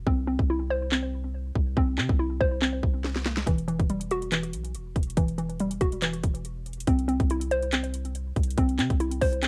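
A brooding, hard-hitting trap excerpt at 141 BPM in 4/4 with a half-time feel, cut from a longer piece and moving from C to Emadd9 at 3.5 seconds and back to C at 6.9 seconds. A hollow, bouncy square-wave pluck carries the arpeggios up front from E3 to C5, its fast attack and decaying filter pluck tinged with a noise layer and softened by chorus, low-pass filtering, cassette tape color and tape echo. Beneath it, a long, deep 808-style bass with a sine tone and mellow decay sustains from E1 to C3 throughout. The electronic trap drum kit sits up front with a hard-clipped kick, sharp snare, metallic hi-hats and handclaps, opening with a break that ends in a drum fill between 3.0 and 3.5 seconds. The whole has the intimate feel of a home recording on cassette with light reverb.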